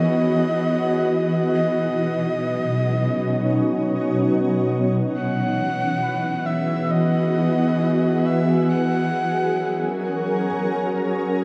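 In a straight, unhurried 4/4, this luminous ambient fragment from a longer piece opens on a shimmering, detuned pad that sits up front with slow-attack chords moving from Emaj7 to B, while a breathy, flute-like synth lead with vibrato and chorus carries a soft melody until 10.5 seconds. At 5.1 seconds the harmony returns to Emaj7 and later shifts to F#, and a felt-muted upright piano enters at 6.0 seconds with very quiet, intimate arpeggios high in its range. A plate reverb soaks the whole mix in a dreamy haze.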